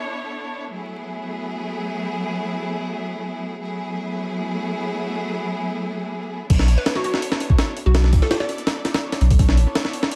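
Clear, bowed strings open this atmospheric, nostalgic drum and bass cut, drawn from a longer jungle piece, holding sustained ensemble chords with a gentle vibrato that moves between Bm11 and F#m11. At 6.5 seconds the drop arrives: a compressed, sampler-style breakbeat kit pitched up and placed up front, with a thumpy kick, a high-tuned snare, hi-hat and crash cymbal, all carrying a gritty, tape-like grain, studio reverb and analog delay. A deep, thick sub bass with a fast attack enters at the same moment, its tube saturation giving the low end a heavy, rounded weight. At 6.8 seconds a hollow, bouncy square-wave pluck adds a short, detuned melody, with chorus and analog delay trailing each decaying note. The mix is echo-heavy and surrounded by spring reverb and a digital ambience, with vinyl crackle adding a dusty, old-record texture beneath the strings and beats.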